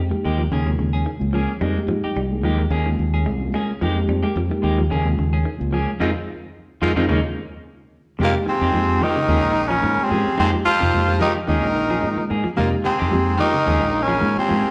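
Funky and hypnotic, this afrobeat excerpt in F minor moves at 110 BPM with a light sixteenth-note swing, built on a round, punchy fingered electric bass up front that cycles between Fm11 and Eb7sus4 while a mellow, reedy electric piano with fast tremolo, a dark semi-hollow guitar playing arpeggios and a clean picked guitar with harmonic tremolo stabs fill in behind it. The band hits a shared accent from 6.0 to 8.2 seconds, and at 8.2 seconds a gritty tenor saxophone takes the melody up front, backed in the background by a brilliant trumpet and a distant, raspy baritone saxophone on second lines. The whole group sounds like it is playing live in one large studio room, bathed in a generous, wet reverb.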